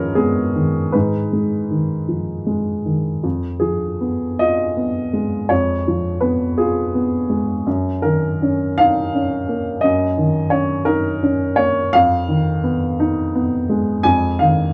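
Reflective and wistful, this short passage of neoclassical minimalist piano is cut from a longer piece and unfolds in 6/8 with a loose, rubato feel. A single upright piano carries everything on its own, spanning from F2 up to Ab5. Its tone is dark and woody, with a short sustain that lets each chord fade quickly rather than ring. The harmony opens on Abm, shifts to Fm7b5 at 3.2 seconds for a longer second passage, moves through Ebm7/Gb, and returns to Fm7b5 at 11.9 seconds. Close, detailed miking with little reverb places the instrument up front, so the natural grain of the piano comes through clearly.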